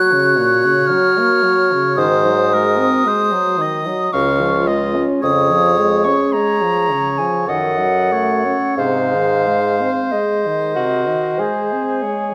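Lyrical and tender, this slow romantic wind quintet excerpt drifts in a rubato 3/4 at roughly 43-57 BPM, with the pure, straight-toned concert flute carrying the tongued melody high above a clear oboe second line. The mellow, distant clarinet and the warm, roomy French horn fill out the accompaniment, and the bassoon enters at 2.0 s with an up-front bass touched by light vibrato. A wet recital hall reverb surrounds the ensemble as the harmony moves from Gb toward Db and settles on Ab.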